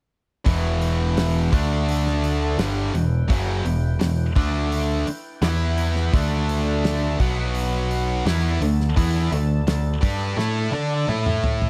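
A dry classic rock excerpt with little reverb, gritty and driving in a straight 4/4. Two bright, picked electric guitars play the riff over Em, D5 and B5 chords: one tight, distorted and up front, the other overdriven. Beneath them sit a growling, up-front overdriven bass, a damped 70s acoustic kit with a fat snare, tight kick and rolled-off top, and a very quiet, full, lightly overdriven tonewheel organ holding sustained chords with key click and a slow rotary speaker, and the drums close with a fill from 10.4 seconds.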